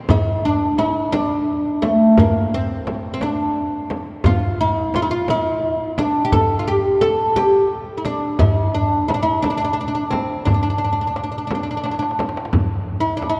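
Longing and soulful, this Persian modal ensemble piece moves in a slow, straight 6/8 at 58 BPM, set in D dastgah shur with tuning at A4 = 443 Hz, and is cut from a longer piece. The plectrum-plucked, fretless oud carries the melody up front, its double strings giving a woody, mellow voice that stays between A3 and A4. Beneath it a deep, large frame drum sits close, played with soft hands, while a tight tombak, also under soft hands, keeps to the background with its own small-room sound. All three play from 0.1 to 13.4 s, and a drum fill arrives at 11.8 s. The whole ensemble is bathed in a wet cathedral reverb with a long 4.2-second decay, as if captured in a church or concert hall.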